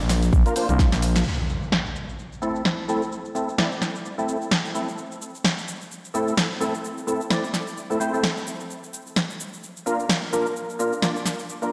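Bass house, gritty and swaggering with a swung feel, opens with a brief burst of growling, thick FM bass, a punchy, layered electronic kick and a very quiet, dry, dark soul kit with a rolled-off top, all gone by 1.2 seconds after a drum fill and a band accent around 1.1 seconds; a filtered house kit of crash, hats, shaker and punchy snare runs throughout, beneath hollow, chorused organ stabs that pump with sidechain and trail into diffuse delay, while an electronic impact lands at 1.3 seconds in a dreamy mix soaked in lush hall reverb.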